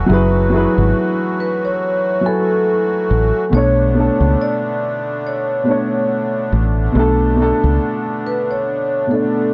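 A deep, round dub bass played with the fingers sits up front, foam-muted and amped, holding the low end of this hazy, nostalgic hip hop excerpt at 70 BPM with a swung 16th feel. A dark, woody upright piano, boxy and filtered, carries the accompaniment through the whole excerpt, while a reedy accordion with light tremolo tuning fills in sweet, smooth sustained chords. From 1.4 seconds a vibraphone played with soft mallets takes the melody, its metallic ring shaded by a slow motor vibrato and a plate reverb. The harmony moves from F#m9 to Bm9 at 3.5 seconds, and the bass drops out at 7.8 seconds, leaving the keys and vibraphone to close. A small room and the soft grain of cassette tape give the whole thing a faded, intimate sound.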